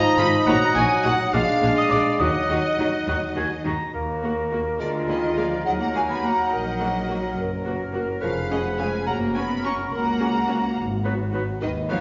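Cinematic orchestral music in Eb minor, 6/8 at 70 BPM, with a quirky, mischievous mood, cut from a longer piece and steeped in wet recital-hall reverb. A delicate, tinkling music box opens the melody alongside a lush, vibrato-rich violin section, stopping at 3.6 seconds while the violins carry on. Around them a clear clarinet, a warm oboe, a background violin section and an airy, hollow flute ensemble weave second lines, a mellow bassoon and violas accompany, a dark French horn section sustains chords, and focused cellos and double basses anchor the bass through Ebm, Bb7, Gb and Abm7 harmonies.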